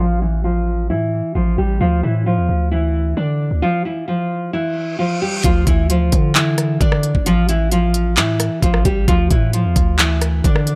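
Brooding and eerie, this half-time trap and hip hop excerpt at 132 BPM in D minor opens with an up-front, fingerpicked nylon-string guitar melody, finger squeaks and all, treated with tape echo under a filter sweep, over a deep, mellow sine 808 bass, pausing for a stop at 3.6 seconds before a reverse cymbal leads into the entry at 5.4 seconds of an overdriven, small-room trap kit with a knocking kick, crisp hats, handclaps and rim clicks, all set in a digital ambience.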